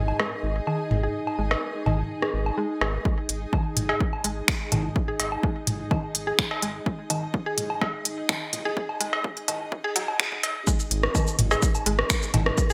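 A woody, mallet-like synth pluck carries the quirky riff in this clinical minimal techno excerpt, its percussive FM tone colored by chorus, cassette-tape grit, delay and sidechain pumping. Beneath it sits a deep, round analog bass, while a granular cloud pad adds a blurred, cloudy haze with its own built-in reverb, both also breathing with sidechain pumping. From the start, a booming analog drum machine plays cowbell, rim click, toms and woodblock through gated reverb. At 3.1 seconds a punchy electronic kick enters, soon followed by a garage kit of finger snaps, shaker and crisp hi-hats, and a build-up begins with a filter sweep on the synth arpeggio sound. The build-up leads to a drop at 10.7 seconds, all set in a bright, 1980s-style digital production with a moderate plate reverb, digital ambience and a high-pass filter.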